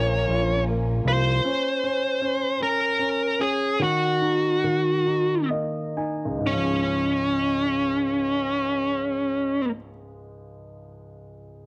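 Set in a snug booth ambience, this romantic, swaying pop passage in 6/8, cut from a longer piece, opens with a bright, overdriven, picked electric lead guitar carrying the melody over polished, present grand piano, joined by lush, bowed symphonic strings in the background and a fat, saturated analog bass, both of which drop out at 1.4 s. The pace then slows, and the piano takes a fill at 5.1 s.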